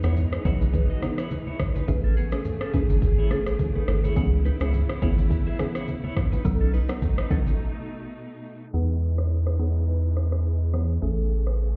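A round, dark analog bass sits up front in this sunny, breezy afrobeats piece, joined by an overdriven electronic drum kit with a deep kick, metallic hi-hats, rim clicks and shaker, and by saturated, low-tuned congas in the background until 7.6 seconds. A woody FM synth pluck with chorus and phaser carries the accompaniment alongside lush bowed strings, while a twangy clean guitar riff with tremolo and tape echo plays until 7.4 seconds, and a marimba melody with tape echo returns after a short break at 8.7 seconds. The mix sounds muffled, as if heard through a wall, with a stone room reverb and a low-pass filter dulling the top.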